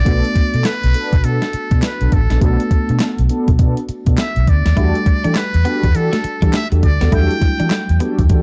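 New jack swing R&B at 102 BPM in E minor with a slick, confident swung groove, where a buzzy, breathy muted trumpet sings a jazzy melody over a chorused, phased and tremolo-laden FM electric piano, a round foam-muted fingered bass, detuned sawtooth synth brass stabs and an up-front, crisp 8-bit drum machine with a thumpy kick, snare, hi-hat and handclaps, while a clean, compressed electric guitar riff slips in at 4.8 seconds as the chords move from Bm7 to Em11, all in a dark, dry production.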